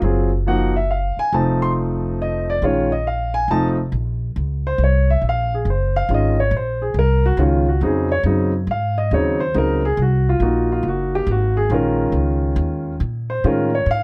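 A concert grand piano leads this moody, swinging jazz piano-trio excerpt, its warm, open tone rich with deep bass and ranging from Db3 up to C6. It carries the melody from the start and moves into a solo at 3.9 seconds that runs through to 14.0 seconds. Beneath it, an upright bass plays pizzicato on steel strings, with a woody, warm sound that sits up front alongside the piano for the whole passage. The groove is a brisk waltz at 139 BPM in 3/4 with a swung eighth-note feel, set in Bb minor over changes that move from Gbmaj7 through F7 to Bbm7. Close, detailed microphones and a light touch of reverb keep both instruments intimate and present.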